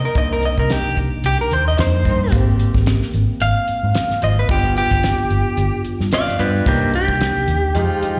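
Over a straight-eighth 4/4 groove at 111 BPM, with a light 16th-note swing, this brooding, smoky soul blues in C minor moves through Cm7, Abmaj7 and G7 before returning to Cm7, a short passage cut from a longer piece. The damped 70s drum kit comes in at 0.2 s with hi-hat, a tight kick and a fat snare, sounding dry and up front with a rolled-off top. Underneath, a vintage muted fingered electric bass gives a dark, round, punchy foam-muted low end. Out front, an electric guitar through a small old amp carries a clean solo melody with a slightly broken-up, lo-fi, compressed tone and a slapback echo. A clean, direct tine electric piano adds accompaniment treated with phaser and slapback echo, while a warm horn section sits in the background with loose sustained chords, light vibrato and octave doubling. The whole performance sounds like a live gig heard through the venue's PA, wrapped in recital hall reverb.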